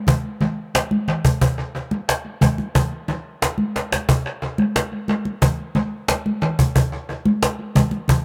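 A snappy, saturated cajon with rattling snares and hard-handed hits sits up front alongside damped, high-tuned congas with a thick-skinned, small-room tone, both entering at 0.1 s and soaked in tape echo to set a hypnotic, hazy rock groove in a straight 4/4 at 90 BPM, with a brief drum fill at 3.8 s and light reverb across an echo-heavy mix in this short cut from a longer piece.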